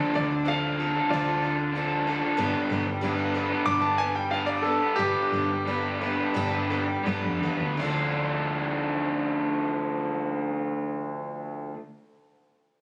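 A bright concert grand piano carries the melody with a brilliant, polished tone and a slapback echo, playing a solo at the opening of this wistful, dusty rock excerpt in D dorian. The straight 4/4 pulse sits between 80 and 94 BPM and slows from 2.4 s as the harmony moves from Dm7 to Gadd9. The piano drops out at 7.0 s, and the music returns to Dm7 at 7.8 s. A raw garage guitar plays an overdriven, lo-fi riff that is double-tracked and up front, while a picked twelve-string acoustic guitar adds a shimmering, octave-doubled accompaniment with a boxy archtop character. Underneath, a short-scale hollow-body electric bass gives a dark, round, amped low end. The sound was captured on a phone in the room, with club reverb and compression.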